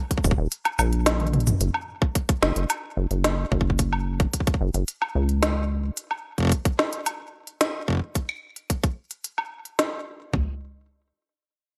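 A glitchy, intricate IDM cut from a longer piece opens on a straight 110 BPM groove in F# major, where an overdriven, up-front electronic kit pairs a tight kick and toms with a woody snare, crisp hats, cabasa and woodblock, the upper pieces carrying gated reverb and digital delay and a drum fill landing at 1.2 seconds. A deep, rubbery acid bass with a resonant square-wave filter pluck and dark decaying tone runs underneath until 5.9 seconds, after which the drums carry on alone to 10.5 seconds. The sound is bright and 1980s-flavoured with light reverb, a small-room character on the kit, and audible lossy compression artefacts.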